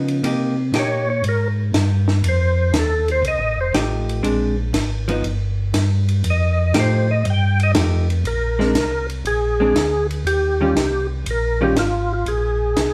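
A gritty, overdriven tonewheel organ carries the melody from 0.8 seconds, its percussive attack colored by chorus vibrato and a slow rotary speaker, taking a solo until 8.3 seconds in this greasy, bluesy swinging soul jazz organ trio cut from a longer piece. Beneath it, a round, mellow second organ with audible key click and slow rotary holds down the bass line, while a clean, compressed hollow-body jazz guitar comps with dark picked chords through ninth and seventh harmonies, stopping at 11.8 seconds. A compact cocktail drum kit with a high-tuned snare, hi-hat and ride sits back with a smooth, rolled-off top, and the whole trio is heard from further back in a moderately reverberant studio room.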